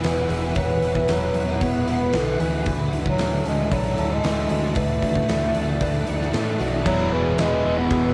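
A straight 4/4 pulse at 114 BPM drives this blissful, hazy shoegaze and dream pop excerpt in E mixolydian, with a huge arena drum kit, punchy and fat-snared, under a growling overdriven bass, a thick, dark fuzz guitar riff and a very quiet clean electric guitar riff recorded direct. A bass clarinet carries the melody with light vibrato and a jazz touch through cassette tape and analog delay, while a shimmering, boxy twelve-string acoustic guitar picks arpeggios and an icy, crystalline glass pad holds detuned chords in the background over Esus2 and Dsus2. At 6.9 seconds the harmony turns to Eadd9 as a biting, double-tracked overdriven guitar riff joins, all set in a small room on a home cassette recording.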